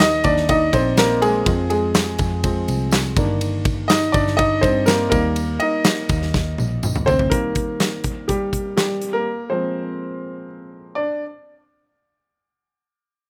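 A clear, smooth grand piano with a vintage character and short sustain leads this anthemic, piano-driven pop excerpt in Eb major at 123 BPM. It is backed by a huge arena drum kit with punchy kick, bright cymbals and handclaps that plays a fill at 6.3 seconds, a dark, round, foam-muted electric bass that drops out at 7.3 seconds, and a very quiet, jingly, compressed tambourine. The drums fall away at 9.1 seconds in a dry, outdoor sound.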